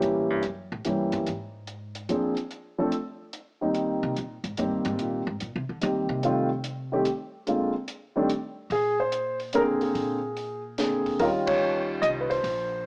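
A swung 3/4 lilt at 145 BPM sets this short jazz piano trio passage in motion, its mood warm and swinging. The upright bass takes the spotlight with a solo through the first 8.7 seconds, its pizzicato steel strings sounding woody and thumpy, while a dark, mellow baby grand piano carries the melody up front with long sustain. A compact cocktail drum kit sits low in the mix, with hi-hat, ride cymbal, a high-tuned snare and a punchy kick rendered smooth and rolled-off on top. The harmony moves from Edim7 through Eb6, Cm7 and a rootless F9 to Bb9, then settles on Eb9 as the band hits a shared accent at 11.4 seconds. Light reverb and a small-speaker coloring give the whole take a cozy, intimate feel, and it ends as a fragment cut from a longer piece.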